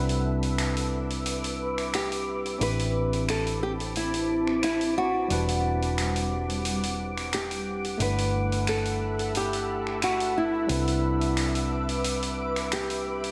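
A small, fingerpicked nylon-string guitar carries the melody in this wistful sunset chillout excerpt, entering at 1.9 seconds with a digital delay trailing its acoustic tone. Beneath it, an overdriven tine electric piano, bright and barky through a combo amp and also given digital delay, supplies the accompaniment, while a shimmering, ethereal pad holds sustained chords built from detuned unison sine tones with an octave-up sheen, granular texture, chorus, slow attack and long release. A dark, round hollow-body short-scale electric bass, fingered and amped, anchors the low end. A dusty soul sampler-style kit of finger snaps and hi-hat sounds compressed and gritty, re-recorded in a large room. At 89 BPM in 4/4 with a light swing on the 16ths, the harmony moves through Cmaj9, Am11, Em9 and Gmaj13 before returning to Cmaj9, all bathed in a lush hall reverb.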